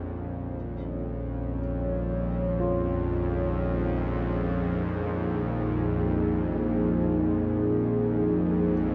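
Floating in free time, this dark ambient drone unfolds across a short 8.9-second fragment cut from a longer piece, and its mood is unsettling and desolate. Up front, a low bowed-like drone holds a tense, string-like tone built from sawtooth layers in unison with a noise layer. It swells in slowly, carries vibrato and its own reverb, and stays bright despite its deep register. Alongside it sits a moody analog pad of detuned sawtooth and triangle tones with a sub octave, sustaining chords through a chorus effect. A very quiet baby grand piano traces mellow, shadowy arpeggios with long sustain. The whole recording is soaked in a huge, wet ambient reverb with a 7.8-second decay, and its cassette-tape sound rolls off the top end.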